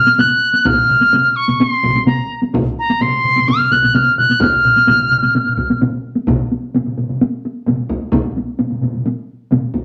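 A straight 4/4 pulse starts at 129 BPM and keeps speeding up through this driving, ceremonial Japanese taiko ensemble fragment in F miyako bushi. Up front, a pure, bright piccolo carries a tongued, vibrato-laden melody between Bb5 and Gb6 until 5.8 s. Beneath it, four taiko layers struck with hard or heavy sticks sit at varying depths, from a close drum to a live-room drum to background drums in a small and a large distant room, all bathed in wet studio reverb, before the music moves into a new section at 6.3 s.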